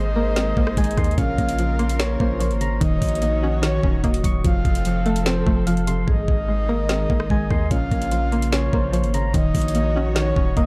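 A brooding, eerie half-time trap fragment opens on a breathy, flute-like synth lead carrying a second line over soft, round electric-piano-like arpeggios, a twangy, string-like resonator pluck and a dark bowed studio string section in the background, with a deep, mellow 808-style bass beneath, before a knocking trap kit with woody snare, rim click and metallic hats enters at 0.4 seconds, the hats dropping out between 6.1 and 7.7 seconds in a dry, dusky mix.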